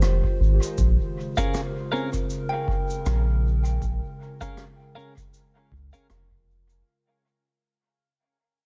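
Ambient dub with a hazy, spacious mood, cut from a longer piece and fading out across its 6.9 seconds, built on a round, up-front sub bass and a deep analog kick under lightly swung cabasa and rim clicks. A warbling, detuned tape-like pad holds nostalgic sustained chords moving from Fm7 to Bbm7, while a woody, hollow kalimba plays soft arpeggios until 5.6 seconds. Clean, compressed twelve-string electric guitar stabs enter at 1.4 seconds, the guitar, kalimba and percussion all trailing dub echo in an echo-heavy small-room mix.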